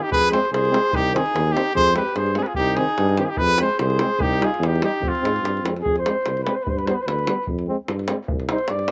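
Recorded outdoors and nearly dry, this fiery, restless Balkan brass band fragment is cut from a longer piece, moving in a brisk two-beat metre with a swung sixteenth-note lilt. A warm trumpet carries the melody up front, sounding distant and roomy in a classical style, while a soft-attacked flugelhorn plays a second line. A mellow tuba with light vibrato and a smooth top anchors the bass up front, and a tight, vintage-toned, band-limited davul drives the percussion. Further back, a punchy trombone and a mellow euphonium, both with light vibrato and slapback echo, fill in the accompaniment. The trumpet drops out at 5.7 seconds, and from 5.8 seconds the flugelhorn takes a solo over harmony that shifts from alternating F minor and C minor chords to a G major chord before settling back.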